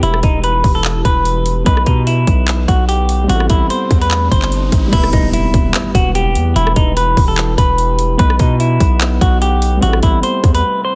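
A menacing, eerie trap excerpt in E harmonic minor at 147 BPM in a half-time feel centres on a clean, hollow-bodied semi-hollow electric guitar carrying the melody up front through spring reverb and a low-pass filter. Behind it sit a dark, mellow concert grand piano with audible action noise and a deep, detuned sawtooth ambient pad with chorus. Underneath, a punchy, saturated 808-style bass and a trap kit with a hard-clipped kick, metallic hats, handclaps, rim clicks, crash and a softly clipped snare sit up front, a very quiet riser from 3.7 seconds leads into an impact at 4.9 seconds, and bass and drums stop at 10.6 seconds for a brief break in this dense, heavily limited master.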